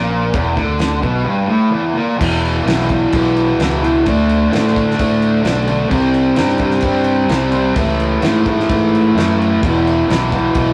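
A raw, rowdy garage rock cut opens on a double-tracked fuzz guitar riff, bright and up front, over a growling, overdriven fingered electric bass, with a cloth-damped, thuddy drum kit joining at 0.3 seconds with a fat snare, tight kick and dark crash cymbal, its sound gritty and saturated. The riff moves through E5, D5, C5 and A/C# before returning to E5, driving a straight 4/4 groove that shifts into a new section at 2.2 seconds. Wet reverb and a rough rehearsal-room sound frame this fragment of a longer piece.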